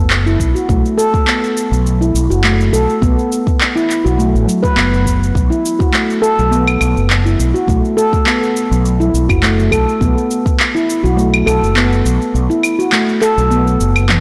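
Lightly swung in 4/4, this meditative organic downtempo excerpt sets a deep, layered electronic kick and an up-front deep house kit of cabasa, claves, handclaps and toms under a dark, round fretless bass carrying transformer saturation, ensemble chorus and sidechain pumping, while a ringing, fingertip-played handpan spins tape-echoed arpeggios through a moderate concert hall reverb, all captured in a blown-out, overdriven recording, until the kick drops out at 12.3 seconds.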